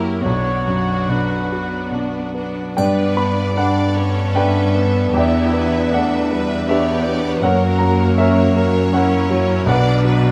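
A rubato pulse in triple metre sways beneath this passionate, brooding fragment of a romantic movement for piano and orchestra, cut from a longer piece. The clear grand piano sits up front carrying the melody across a broad range, while a bright, lush violin section also plays the melody from the background and a rich, focused violin section traces a second line. A distant viola section fills in the accompaniment, and an intense cello section anchors the bass with light vibrato. A warm, close-miked oboe adds a brief solo line at the opening, and from 2.8 seconds a dark, roomy French horn section holds sustained chords behind the strings, joined briefly by a faint triangle. The harmony moves from Bm through Gmaj7, Em7 and F# before returning to Bm, all captured with close, detailed microphones in a concert hall of moderate reverb.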